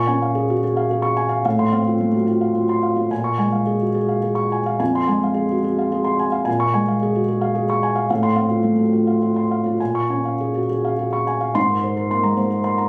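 Captured on a phone in the room with a light touch of reverb, this short cut from a longer neoclassical minimalist piece places a solo felt-muted upright piano up front, its thick felt giving a dark, intimate, mellow tone across a range from F2 to Db6. In Bb minor and 3/4 at 108 BPM, played with rubato, the melancholic, reflective harmony circles between Bbm7, F/A and Fm before turning to an Abadd9 at 11.6 seconds as a new section begins.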